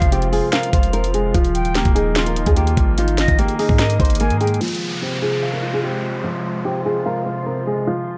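Knocking kick, sharp snare and metallic hats from an up-front trap drum kit drive this menacing, dark hip hop clip in a half-time feel, joined by a deep, boomy 808-style bass with a clean sine tone until 4.6 seconds. Over them, a thumb-plucked nylon-string guitar carries the melody through a low-pass filter while a dark concert grand piano with a deep bass end plays the accompaniment. A glassy FM pad holds ethereal sustained chords, treated with ensemble chorus and its own reverb, as an airy silver flute with vibrato sits in the background on a second line with tape echo. The harmony moves from Fm through Ebadd9 and Absus2 before returning to Fm. At 4.6 seconds the bass and flute drop away, with the drums following at 4.8 seconds, a filter sweep opens the second section, and an electronic downlifter sounds under the remaining guitar, piano and pad in a small room.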